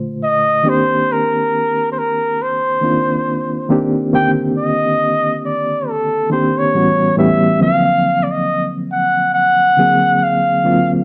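Introspective and sultry, this short R&B excerpt moves at a slow, lightly swung pace, with a reedy, lightly overdriven electric piano laying down rich chords colored by tremolo and plate reverb, heard up front as if through built-in speakers. A clear, punchy flugelhorn carries the solo melody from 0.2 seconds, its vintage, pop-style vibrato touched by slapback echo, while the harmony settles on Cm9 before shifting to A13 and D7alt near the end. The production is dark and warm, set in a moderate studio room.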